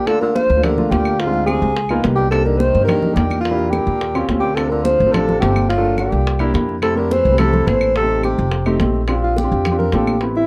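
A dark, subtoned alto saxophone with scooped notes and plate reverb carries the melody from the first moment of this sophisticated, danceable Afro-Cuban jazz excerpt, shadowed by a roomy tenor saxophone second line with vibrato until 8.8 seconds, while an intimate baby grand piano with audible action noise accompanies; bright, high-tuned congas, tight bongos and woody claves fill out the percussion, a thumpy pizzicato upright bass sits up front from 0.5 seconds, and the alto breaks into a solo at 9.1 seconds.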